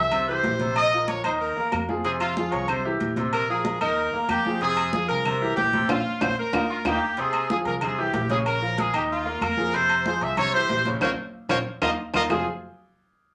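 Salsa in F minor at 187 BPM, danceable and fiery, with a brilliant, punchy horn section up front carrying the melody over a bright, open upright piano, dark, thumpy pizzicato upright bass, ringing agogo bells and timbales, woody band-limited claves and high-tuned congas with hard hands, while a smooth-topped trombone section with light vibrato adds a brief second line from 6.7 to 7.2 seconds, drum fills and band accents punctuate the phrases, and a club reverb gives the room some space, in this short cut from a longer piece.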